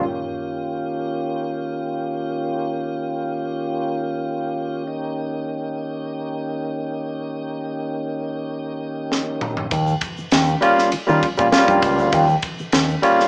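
A barky, lightly overdriven tine electric piano punches out stabs and a closing fill in this playful, funky 99 BPM excerpt in Eb mixolydian, opening on an Eb9 over a mellow, round tonewheel organ with key click turning through a slow rotary speaker, before a crisp fusion drum kit with a high-tuned snare and punchy kick fills in at 9.1 seconds and a bright, envelope-filtered picked bass and a very quiet, grainy tube shaker join at 9.7 seconds, the band heard live in a modest studio room through a small-speaker sound.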